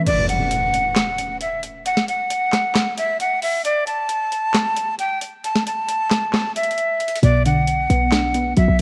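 Hip hop trap excerpt at 134 BPM in a half-time feel, eerie and hard-hitting, in B minor, with a breathy, bright jazz flute carrying the melody up front throughout, its crisp chiff and vibrato trailed by digital delay. Sharp snare, metallic hats, handclaps and crash from an electronic trap kit drive a break from 0.1 s, opening with an electronic impact, and the kick drops out from 5.4 s until 7.2 s, when a punchy, tight 808-style bass on B1 and a detuned, dusty sawtooth pluck with chorus land on a Bm chord. The whole track carries light reverb and a worn cassette-tape warble with drifting pitch.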